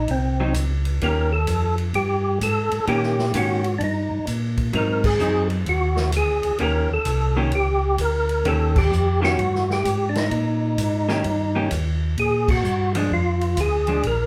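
Soul jazz organ trio in a greasy, soulful swing, caught mid-tune from a longer piece. A fat, percussive tonewheel organ carries the melody up front, its key click and third-harmonic percussion cutting through a slow rotary speaker and chorus vibrato. Beneath it, a second, darker tonewheel organ voice plays a round, clean bass line, also turning through a slow rotary speaker. A vintage hollow-body electric guitar adds picked, compressed accompaniment, while a swinging big-band drum kit with a punchy kick and medium-tuned snare sits lower in the mix, with ride, hi-hat and crash cymbals. The chords move between Ab7 and Eb7 before reaching Bb7, and the band hits together on accents at 5.0, 8.7 and 12.4 seconds, all heard from deeper in a club room with a short, wet reverb.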